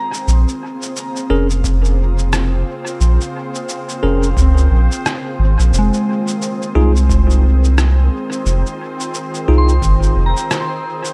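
Fading in on a calm, warbling organ-like pad with ensemble chorus, joined from the start by gentle FM synth bell arpeggios treated with phaser and tape echo and a bubbling, resonant stepped-filter sawtooth texture, this spacious, deep ambient dub excerpt in F minor at 88 BPM with a swung 16th feel rests on an up-front, round sub bass under Bbm7 and Fm7, a muffled, overdriven electronic cabasa and rim click soaked in dub echo, an overdriven analog kick in the background from 1.6 seconds, and bright, clean tine electric piano stabs with dub echo, in a dry, close-sounding mix.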